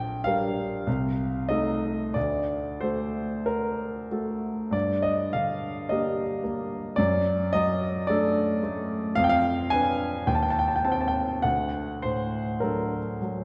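The recording sounds dark and enveloping, its top end gently rolled off, with a wet scoring-stage reverb of about 2.0 seconds surrounding the sound. This short passage is cut from a Romantic nocturne for solo grand piano, and its mood is melancholic and wistful as it moves freely in 4/4 with rubato. The piano sits up front and intimate, with a natural tone, and the audible mechanical noise of its action can be heard beneath the notes as it ranges from a deep Bb1 up to A5. The opening phrase reaches a dominant chord at 2.2 seconds. A second section begins at 4.7 seconds, passing through a diminished seventh and a minor chord before arriving again on the dominant at 11.4 seconds.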